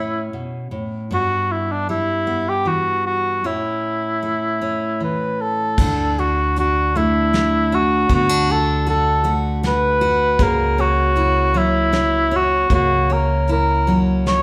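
In a slow, straight 3/4 at 78 BPM, this heartfelt, nostalgic acoustic folk-pop ballad in D major opens with a mellow cor anglais singing the melody with light vibrato over a bright, full-bodied fingerpicked steel-string guitar with audible finger squeak, both up front, until at 5.8 s a woody, thumpy pizzicato upright bass and a dark, rolled-off brush drum kit join, all played live together in one room with a moderate large studio reverb, in a short piece cut from a longer recording.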